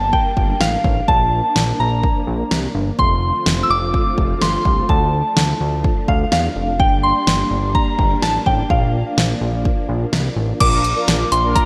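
A straight 4/4 groove from an up-front deep house drum kit, with its deep kick, fat snare and gated reverb, drives this wistful, nostalgic synth-pop fragment, where a soft, pure FM synth bell carries the melody through chorus and digital delay over vintage, organ-like ensemble strings, a thick, nasal, detuned analog bass, and a round, dark synth brass that enters at 10.6 s with a phaser, the whole mix sitting in a lush hall reverb with a bright 1980s-style digital sheen.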